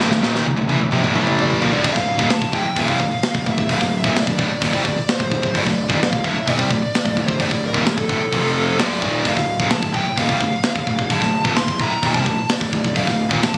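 Dark and relentless, this heavy metal passage cut from a longer piece opens with a drum fill on an up-front acoustic kit with a tight kick and medium-tuned snare, while a barely audible double-tracked distorted guitar plays a riff until 1.8 seconds, two bright high-gain guitars riff in the background, and a growly fuzz bass holds the low end; from 1.4 seconds a dark, smooth overdriven lead guitar carries the melody through digital delay, within a lightly reverberant, compressed room sound captured on a phone.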